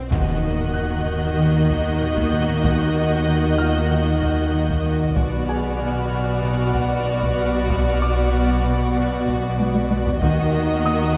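A wet, roomy scoring-stage sound opens this ominous, tense suspense film cue with an electronic swell and impact, while a ringing fingerpicked harp riff and a round sine sub-bass drone sit alongside bowed sul tasto strings: a rich violin melody, a second violin line, floating violas, lush cellos and smooth double basses. A boxy grand piano with long sustain adds colour in the background, joined by a high, shadowy violin texture, and taiko drums struck with heavy sticks play in the background until just before the end, with a fill between 9.6 and 10.2 seconds. The harmony shifts from Ebm to Bm at 5.2 seconds before returning to Ebm at 10.2 seconds, in this cut from a longer piece.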